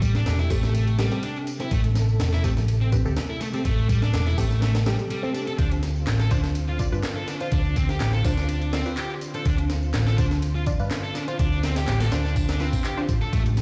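Swaggering and funky, this breakbeat cut from a longer piece rides a straight 124 BPM in 4/4, moving from Am7 to Dm7 at 5.6 seconds. Up front, a sampler-style breakbeat kit, compressed, pitched up and gritty, pairs a thumpy kick and high-tuned snare with hi-hat and ride, beside a dark, round, punchy hollow-body electric bass played with a pick. A thick fuzz guitar carves out a distorted riff, roughened by 12-bit sampler grit and trailed by delay. In the background, a mellow percussive tonewheel organ holds sustained chords through chorus vibrato and a slow rotary speaker, pumping against the sidechain, while layered electronic tambourine and handclaps sit tape-warm alongside it. From 0.5 seconds a nasal, band-passed sawtooth chord stab, detuned and bright, adds phaser, cassette coloring, delay and a filter sweep, and the whole mix sounds as if played on a big sound system in a bare stone room, with vinyl crackle on top.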